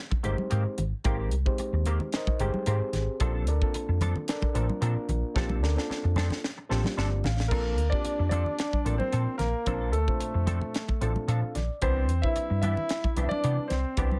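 The hollow-body short-scale electric bass stands out most, round, punchy and up front, anchoring this funky, bright stretch of electric jazz fusion cut from a longer piece, moving at 111 BPM in 4/4 with a light sixteenth-note swing in Bb major. A crisp fusion drum kit with a high-tuned snare, punchy kick, hi-hat and crash sits in an airy, polished studio room. Damped, thick-skinned congas murmur in the background, while a gritty, overdriven reed electric piano played through a combo amp supplies accompaniment and a clean, compressed semi-hollow guitar adds stabs coloured by ensemble chorus. The harmony moves from Abmaj9 to Bbmaj9, and a drum fill from 5.4 seconds plus a short electric piano fill lead into a new section at 7.5 seconds. There a dark, mellow concert grand carries the melody while a forceful trombone, with vibrato and scooped notes, plays a second line beneath it, before the chords lift to Cmaj9 near the close under light reverb.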